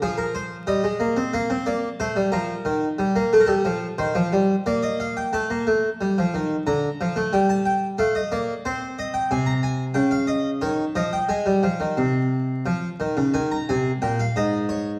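Set in a straight 3/4 at 90 BPM, this baroque-style two-part invention moves with a stately yet lively step. A solo Italian-style harpsichord carries the whole piece from 0.0 to 15.0 seconds, its plucked, full tone coming from two sets of strings and sitting up front in the mix across a range from Ab2 to Bb5. The harmony begins in Eb major and turns to Ab major at 9.3 seconds, passing through chords such as Eb, F7, Cm and Dbadd9 before settling on Ab. The instrument is tuned slightly low, with A4 at 437 Hz, and rings in a wet recital hall reverb with a dark production and a touch of vinyl crackle. The recording is cut from a longer piece.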